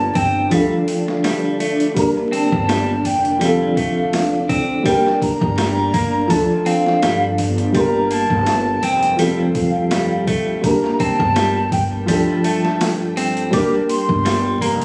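Dark and cinematic, this trip hop excerpt in G minor moves at 83 BPM with a light 16th-note swing, as a breathy wooden flute with sampler grit and tape echo carries the melody over a felt-muted, boxy upright piano shimmering with harmonic tremolo, a warbling string-machine cello pad with ensemble chorus in the background, a woody pizzicato upright bass warmed by tube saturation, clean picked electric guitar arpeggios with delay, and a pitched-down, overdriven boom bap kit with a thumpy kick and high-tuned snare that join at 0.2 seconds, all set in a small room with vinyl crackle and a lo-fi phone-recorded feel.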